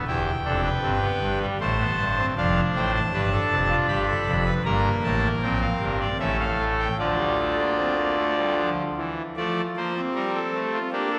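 Classical baroque-style four-part fugue for solo pipe organ, stately and elegant at 78 BPM in 3/4, its brassy trumpet stop sitting up front with a brilliant chiff and baroque voicing across a range from E1 to B5, settling into D minor from 4.6 seconds within a wet church reverb that rings for 3.1 seconds in this short cut from a longer piece.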